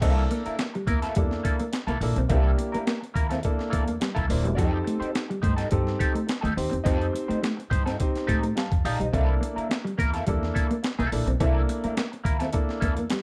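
A dark, warm production with light reverb frames this energetic funk excerpt in a straight 4/4, moving from C13 to F9 at 4.6 seconds and back to C13 at 9.1 seconds. Up front, a gritty, compressed breakbeat sampler-style kit pushes a thumpy kick under snare, hi-hat and crash, while a woody pizzicato upright bass anchors the low end and an upright piano with long sustain adds stabs. A twangy, slightly broken-up electric guitar plays accompaniment through wah, and a mellow, clean electric guitar with subtle chorus carries the riff.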